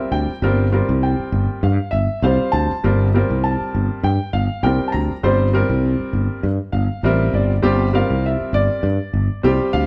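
Funky and driving, this electric jazz fusion excerpt moves at 100 BPM in 4/4 with a 56% swing on sixteenths, resting on a Gm11 chord in G dorian. A growly, amped fretless electric bass sits up front in the low register, while a clear, intimate grand piano with audible action noise and short sustain provides accompaniment and steps out with a fill from 6.4 to 7.6 seconds. The band plays live together in one large studio room, with moderate reverb around them.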